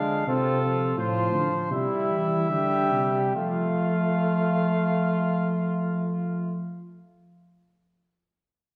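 In a straight 4/4 that slows during the first 3.4 seconds, from somewhere between 69 and 88 BPM, this short stately, joyful classical brass canzona in F major moves through F/C and C before settling on F at 3.4 seconds. Two mellow trumpets carry the melody and a second line, while a bright, up-front trombone with vibrato supplies accompaniment and a tuba with light vibrato anchors the bass. All four play throughout the 6.7-second cut, set in a recital hall's lingering 1.7-second reverb.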